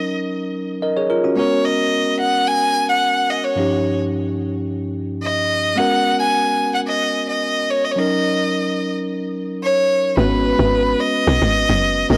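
A smooth, bowed violin with vibrato carries the melody over bright, bell-like electric piano chords, both up front in this soulful, late-night amapiano excerpt, the violin trailed by tape echo as the harmony moves from D#m7 through G#m11. At 10.2 seconds the drop arrives and a tight, punchy log drum bass enters with a fast attack, a noise layer and transformer saturation. The sound is dry and gritty with light reverb.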